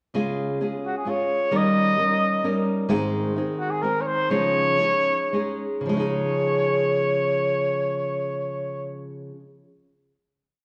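Bathed in a wet recital-hall reverb within a dark, warm production, this romantic and proud mariachi piece in Db major moves in 3/4 at 107-132 BPM, with a fresh-stringed nylon-string guitar fingerpicking and folk-strumming open chord shapes from 0.1 seconds beneath a mellow, distant trumpet that enters at 0.9 seconds with a classical-style, lightly vibrato-tinged melody built from motifs in period phrases, the music slowing from 2.9 seconds before arriving on a final chord.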